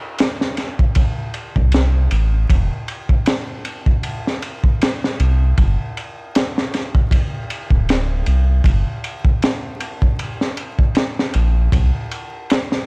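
Trip hop at 78 BPM in 4/4, this hypnotic, cinematic excerpt moves with a lazy swing on the sixteenths and sits slightly below standard pitch. A crunchy breakbeat kit of kick, snare and ride starts at 0.2 s, its high-tuned snare and punchy kick coated in gritty 12-bit sampler texture, with dark cymbals and a rolled-off top. A round analog bass joins at 1.6 s, moving between D1 and C2 with a fast attack and sustained, detuned tone that blends sawtooth, sine and triangle colours, thickened by tube saturation. Both parts sit up front in a dry mix with little reverb, and the bass rests just above the drums in level. Vinyl crackle and a dark, warm production give the whole excerpt a dusty, late-night character.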